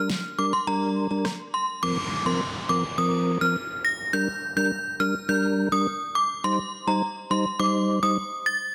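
A ringing, inharmonic FM synth chime carries the melody up front in this hypnotic, sultry dancehall excerpt at 104 BPM in G minor, tuned slightly flat to A4 = 437 Hz, its fast attack and long release thickened by ensemble chorus and digital delay. Beneath it, a soft, flute-like tonewheel organ with audible key click and fast rotary speaker supplies the chords, moving from Gm through Fsus4 back to Gm and on to Cm. A fat, layered electronic snare and rim click appear only during the opening break up to 1.4 s, then an electronic downlifter enters at 1.8 s under light digital ambience and a dense, heavily limited modern master.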